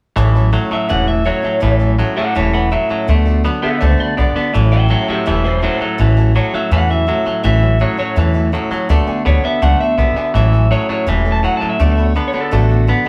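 Played live by a band in one small room with moderate reverb, this rowdy, retro rockabilly passage, cut from a longer piece, moves at 165 BPM in A major over A6 and D6 chords, led by a woody, thumpy gut-string upright bass up front and a clean, compressed twangy electric guitar riff, while a slightly broken-up, lo-fi electric guitar through a small old amp carries the melody from 0.7 seconds, a bright, full-bodied picked steel-string acoustic guitar sits in the background, and a boxy, very quiet upright piano adds accompaniment.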